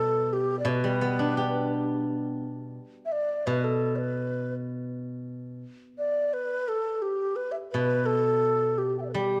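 Chinese traditional music with a graceful, festive mood, heard in a short passage cut from a longer piece. Up front, a low end-blown bamboo xiao carries the melody with a breathy, bright tone, a crisp attack and vibrato, while a steel-string zither played with fingerpicks accompanies beneath it with a ringing, silvery sound. A recital-hall reverb gives the dark, warm production a wet sheen.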